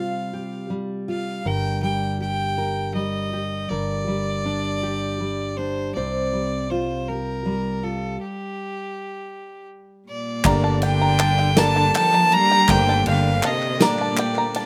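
A clear, earthy fiddle with light vibrato carries the melody up front through this bittersweet, stirring indie folk excerpt in G minor, a slow 6/8 at 53 BPM, over a full-bodied fingerpicked steel-string guitar and a punchy fingered electric bass that enters at 1.5 seconds. After a stop from 8.2 seconds, a focused bowed cello adds a second line at 10.1 seconds, and the arrangement builds at 10.4 seconds as a shimmering octave-doubled twelve-string guitar and a worn baby grand piano join in the background, along with a crisp group handclap, a natural country drum kit with punchy kick, snare and ride, and twangy banjo arpeggios, the piano and banjo each carrying slapback echo. The sound is dry, with little reverb, as if captured outdoors.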